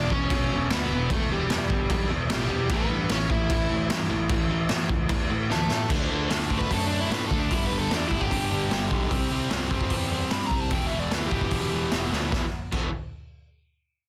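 A dense, heavily limited mix with light reverb puts a gritty, saturated garage drum kit up front, its punchy kick and medium-tuned snare ringing in a small room with a rolled-off top. This is urgent, angry punk rock at 150 BPM in a straight 4/4, cut from a longer piece: a bright distorted electric guitar and a raw overdriven garage guitar pick riffs in the background over a growly fuzz bass, while a warm, overdriven semi-hollow guitar carries the melody from the start. After a drum fill at 5.5 s, an overdriven electric guitar solo runs from 5.9 s to 12.3 s in E minor, moving through D, G5, C and Em before landing on E5.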